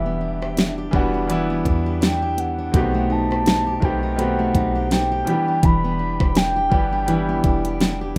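An up-front electronic R&B drum kit, with a knocking kick, fat snare, warm hi-hats and rim clicks, enters at 0.4 seconds and sets a slow 83 BPM groove with swung sixteenths in 4/4. This moody, longing contemporary R&B excerpt in E minor moves from Em7 to B7b9b13 and back to Em7. A mellow, horn-like synth lead carries the melody high above, its sustained sawtooth tone colored by vibrato, chorus, plate reverb and delay. Beneath it, a clear grand piano plays accompaniment while a full-bodied, fingerpicked steel-string acoustic guitar adds dark arpeggios. A deep, round 808-style bass anchors the low end, and the whole track sits in a small room with a rough home demo mix.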